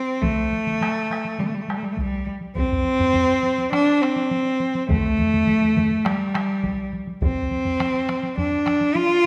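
A lush scoring-stage reverb surrounds this short passage cut from a longer Japanese traditional taiko ensemble piece, which moves at a straight 103 BPM in 4/4 with a ceremonial, driving mood. Up front, a single bowed cello carries the melody from the very start, its clear, smooth tone held even and touched with light vibrato as it moves between G3 and F4. Beneath it, a solo taiko player and two taiko ensembles come in with heavy sticks at 0.2 seconds, one group close and dry and another with a vintage, band-limited colour, both kept in the background. A further taiko ensemble, heard in a small room, joins at 2.7 seconds. The solo taiko, also close and dry, sits furthest back in the mix, while the cello remains the clear focus throughout.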